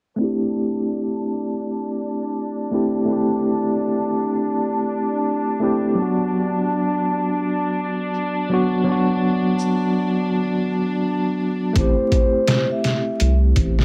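Over a swung sixteenth-note lilt, this brooding, smoky trip hop fragment opens with a tremolo-laced tine electric piano through tape echo and a biting bowed string section, both under filter sweeps, with a close, dry tube shaker in the background, until a brief break at 10.3 seconds gives way at 11.8 seconds to a gritty, pitched-down sampler-style drum kit, a deep round analog bass and a mellow soft-mallet vibraphone with tape echo, all beneath a haze of vinyl crackle.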